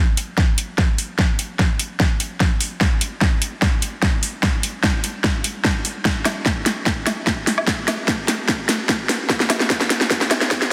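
Heavy and menacing, this short cut from a longer piece is heavy wobble dubstep in 4/4 with a half-time feel. A dubstep drum kit of hi-hat, snare drum and woodblock sits up front, its huge snare and metallic hats carrying a layered, tape-tinged character from 0.2 to 10.7 seconds. An electronic kick drum joins at 0.4 seconds with a punchy, produced thump. The whole passage works as a build-up, with a drum fill and a filter sweep running throughout. A lush hall reverb lends digital ambience, and the master is dense, heavily limited and modern.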